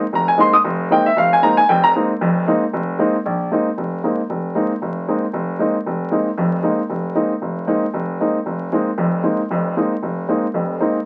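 A fast 230 BPM swing in 4/4 drives this intense, spiritual jazz excerpt, where a woody, short-sustained upright piano plays alone up front from 0.0 to 11.0 seconds across a span from F1 to Eb6, opening on a Bb9sus4 chord and sounding through a club reverb and the crackle of a very old 78 rpm record.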